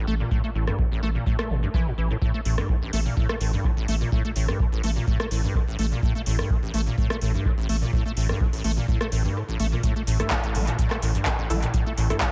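A straight 4/4 pulse drives this raw acid house excerpt, with a deep, tape-warm electronic kick entering at 0.3 seconds and briefly dropping out between 9.4 and 9.8 seconds. Around it, a booming analog drum machine adds handclaps, metallic hi-hats, rim clicks and shaker, overdriven, soaked in dub echo and re-recorded in a small room. Up front, a squelchy, resonant square-wave acid bass plays its plucky riff through tube saturation, ensemble chorus and analog delay, while a thick, saturated sine sub bass holds the low end and pumps under sidechain compression. Late in the passage, from 10.2 seconds, a muted, detuned chord stab surfaces in the background, filtered and chorused with dub echo trailing behind it. The mix is echo-heavy with only light reverb, giving the driving groove a gritty, spacious edge.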